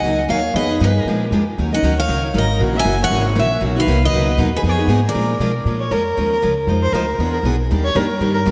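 Bathed in a lush, dreamy hall reverb, this fiery, virtuosic snippet of acoustic string swing races along at 235 BPM in Eb minor. A bright, jumbo-bodied picked steel-string guitar carries the tape-echoed melody until 5.5 s. Beneath it sit a nasal, earthy bowed violin with light vibrato, placed distant in the mix; a second up-front guitar with fresh strings and audible finger squeak driving the accompaniment; and a woody, thumpy gut-string upright bass plucked up front. At 5.7 s the violin takes a solo as the harmony turns toward Ebmaj7.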